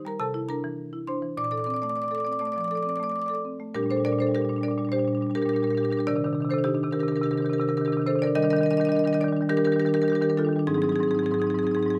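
Flowing and playful, this contemporary classical piece for solo marimba moves at 103 BPM in 4/4 with a straight feel in Bb major, cut from a longer work. The marimba, played with medium hard mallets on padauk bars, sounds woody, dark and smooth yet percussive, sitting up front in light reverb as it ranges from Ab2 to D6. A new section begins at 3.7 seconds, with the harmony drifting through rich chords such as Cm9, Ebmaj7 and Ab7.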